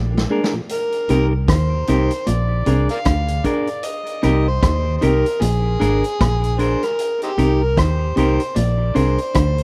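A gritty, overdriven harmonica carries the melody from 0.7 seconds, its amplified tone full of vibrato, scooped notes and tongue slaps, trailed by tape echo. The piece is a hypnotic, serious stretch of roots reggae with a swung 16th-note feel, moving back and forth between Bb7 and Cm7. A dark, foam-muted fingered electric bass sits up front with a round, amped tone, while a vintage drum kit with a punchy kick, medium-tuned snare, rim click, hi-hat and rolled-off top opens the piece with a fill. Low in the background, a compressed, slightly broken-up electric guitar through a small old amp picks a riff. Higher up, a clean, picked electric guitar adds accompaniment soaked in tape echo. A mellow tonewheel organ with key click and slow rotary speaker appears only in the opening moments, and the whole thing has the feel of a rough home demo in a small room.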